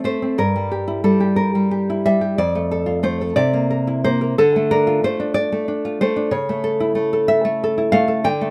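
A romantic solo classical guitar piece in 6/8, played with free, expressive rubato that feels intimate and passionate. The fingerpicked nylon-string guitar sits up front with a woody tone and the slightly dulled character of old strings, spanning F2 to G5 and moving through chords such as Edim/G, F, C7, Dm and A/C# under light reverb. The 8.5-second clip is cut from a longer piece.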